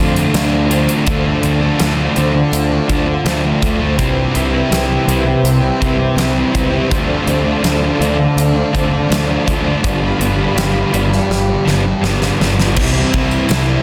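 Shoegaze and dream-pop rock at 82 BPM in a dreamy, blissful 4/4, this short cut layers an up-front overdriven electric guitar riff with reverse reverb over a dark fuzz guitar, a growling overdriven bass and a huge arena drum kit with a fat snare and bright cymbals, while a shimmering, octave-doubled twelve-string acoustic fingerpicks arpeggios through lush chorus and tape echo, a brassy, detuned sawtooth pad holds chorused, tremolo-laden chords until 12.7 s, a very quiet jingly tambourine marks the opening and closing seconds, and a drum fill from 11.3 s leads the Dm7–Cmaj7–Dm7–G7 progression to a closing Cadd9 in a dense, heavily limited master.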